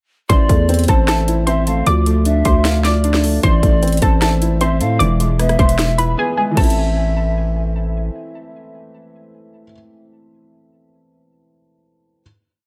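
Trap hip hop with a menacing, hard-hitting half-time feel, where a warbly, dusty lo-fi pluck loops a dark melody over a hollow, distant pan flute counter-melody and a felt-muted upright piano arpeggio, while a growling 808-style bass with pitch slides and an up-front trap kit of hard-clipped kick, sharp snare and metallic hi-hat rolls drive the brief hook before a silent gap at 6.2 seconds, after which the piano, briefly joined by the pluck, flute and bass, carries the final chord and rings on to 12.2 seconds.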